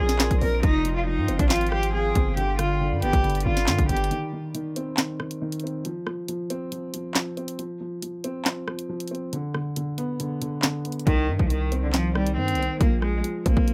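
Tense and menacing, this half-time drill excerpt sets a rich, floating bowed cello melody, played sul tasto by one player, over a dark, boxy grand piano muffled by a low-pass filter, with a deep, detuned analog pad shimmering through chorus and phaser in the background for the first 4.1 seconds. Up front, a drill kit of hard-clipped kick, sharp snare, bright hats, handclaps and rim clicks drives alongside an aggressive, heavy distorted 808 bass. During the break from 4.1 to 11.1 seconds the cello and bass drop out, leaving piano and drums before both return, all in a dry sound.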